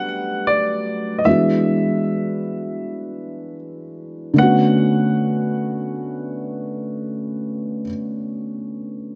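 A felt-muted upright piano and a grand piano open this moody, sensual R&B fragment together in free time and B minor, the upright's dark, boxy accompaniment sitting up front with audible action noise while the grand carries a natural-toned melody of short sustain, touched with delay. The harmony moves from Gmaj7 to E7 before settling on Bm9 at 4.4 seconds. The grand piano stops at 7.8 seconds, leaving the intimate upright alone until 9.2 seconds, all within a lush hall reverb.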